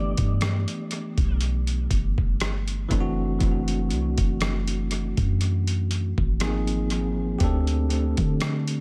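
Romantic and smooth, this contemporary R&B fragment, cut from a longer piece, moves with a slow, lightly swung feel. A bright, bell-like tine electric piano carries the accompaniment throughout, its clean chords trailed by analog delay as the harmony passes from G69 to D9/F# and on to Ab69 and D7sus4. Beneath it, a soft 808-style bass sits up front with a deep, round, sine-like tone that blooms quickly and decays into darkness. A dusty soul sampler-style drum kit enters at 0.2 seconds with hi-hat, rim click and a thumpy kick, sounding gritty, compressed and overdriven, as if re-recorded in a small room, with its own analog delay echoes. Faintly in the background, a picked electric guitar, recorded direct and heard clean with ensemble chorus and delay, offers a brief melodic touch that ends by 1.4 seconds. The mix is dry in terms of room sound yet heavy with echo, giving the close, intimate track a hazy depth.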